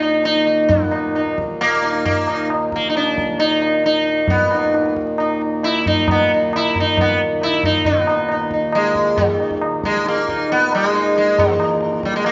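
Hindustani classical music, radiant and meditative, in which an up-front sitar carries the melody with a buzzing, shimmering tone from its sympathetic strings over a reedy, breathing pedal harmonium drone and low-tuned tabla with a short ring, all three playing throughout this 12.3-second fragment as the pace quickens, the sitar and tabla sitting in a reverberant recital hall while the harmonium stays dry and close, and the whole sound is gently dulled at the top.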